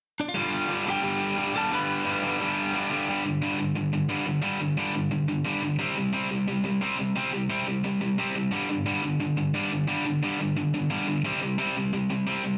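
Captured live through a club PA with little reverb, this short punk excerpt is rebellious and energetic, with a straight feel. A compressed, slightly broken-up lead guitar with slapback echo sits up front, playing a brief melody that ends at 2.4 seconds. Two tight, bright, distorted guitars pick riffs with slapback echo: one stops at 3.1 seconds, while the louder one stays up front and carries the riff alone until 12.6 seconds.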